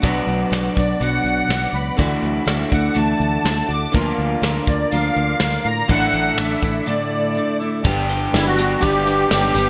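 A steady, straight 4/4 pulse at 123 BPM drives this short folk rock and heartland rock passage, carried by a soft brush drum kit with a punchy kick, medium-tuned snare, hi-hat, ride and crash, up front and wrapped in gated reverb, over a round, dark fingered electric bass. A bright, full-bodied dreadnought acoustic guitar picks the accompaniment while an electric guitar through a small old amp plays a slightly broken-up riff bathed in lush chorus, and a flute-like tonewheel organ holds sustained chords in the background with key click, chorus vibrato and a slow rotary speaker. From 0.8 seconds a shimmering, reedy musette accordion carries the melody up front, trailed by digital delay, giving the hopeful, nostalgic mood its voice. The harmony moves from Bm through Dadd9, Bb/D and Asus4, pausing for a break before landing on G as a new section begins at 7.9 seconds. Just ahead of that, at 7.8 seconds, a very quiet, lightly overdriven reed electric piano slips in. 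The whole sits in a lush hall reverb with small room ambience and a bright 1980s-style digital production sheen, and it is cut from a longer piece.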